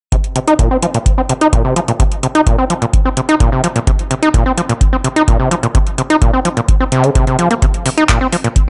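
A straight 4/4 acid house groove at 128 BPM in C minor, driven by a deep electronic kick and a booming analog drum machine with handclaps and metallic hi-hats, both re-recorded in a small room, runs from 0.1 to 8.7 seconds in this trippy, raw cut from a longer piece. Up front, an overdriven acid bass riff, squelchy and gritty with a resonant sawtooth pluck, spans Bb2 to Eb4, carrying distortion, sidechain pumping and tape echo under a filter sweep before it stops at 8.5 seconds. A light reverb and digital ambience frame the mix, which holds nothing above 11.0 kHz.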